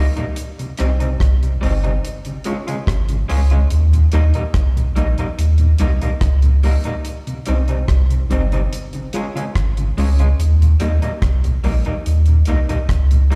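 Roots reggae with a laid-back, uplifting mood, this short cut from a longer piece moves through a Cm, Db and Eb progression in a straight 4/4 feel. A round, sine-like sub bass sits up front from the start, its fast attack and sustained notes anchoring the low end. An electric guitar through a small old amp plays fingered accompaniment with a slightly broken-up, lo-fi, compressed character, bathed in dub echo and slapback echo. Behind it, a mellow tonewheel organ with a flute-like, clean voice adds soft accompaniment coloured by chorus vibrato, key click and a slow rotary speaker, also carrying dub and slapback echo. A deep acoustic reggae drum kit enters at 0.2 seconds with hi-hat, rim click and a dry, tight kick. The whole mix sounds like a live gig heard through the venue's PA, with the spacious reverb of a recital hall.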